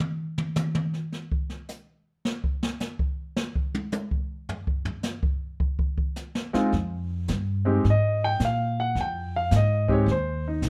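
A relaxed, swinging jazz piano trio excerpt at 107 BPM in 4/4 opens with a brushed drum kit soloing until 6.7 seconds, its boomy kick and medium-tuned snare sounding natural in a small room, before a woody, growly pizzicato upright bass and a smooth, vintage-toned grand piano with short sustain enter at 6.5 seconds, just ahead of an Fm7 chord at 6.7 seconds, all up front in a dark production with light reverb.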